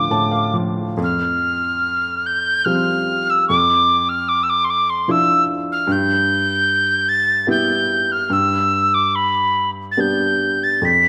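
A haunting, mournful excerpt of a Celtic slow air at 73 BPM in a rubato 3/4 begins with a brief felt-muted upright piano fill beneath the whistle. A reedy wooden whistle sings the melody high above, airy and tongued with chiff and vibrato, over the mellow, intimate piano with its audible action noise, moving from Dm through Fsus2 and Em/G to G, all bathed in a moderate concert hall reverb.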